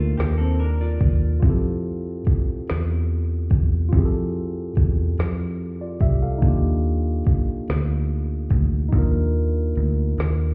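A clean, picked electric guitar line and a mellow tine electric piano open this tender, sensual slow R&B excerpt in 6/8 at 48 BPM in F major, over a round, foam-muted vintage bass. The guitar drops out at 1.4 s as the harmony moves from Ebmaj7 to Fmaj9, while an up-front electronic kit with a soft kick, woody snare and metallic hats carries the groove, and the electric piano adds a short fill at 10.2 s. The whole sound is muffled, as if heard through a wall, and set in stone-room reverb.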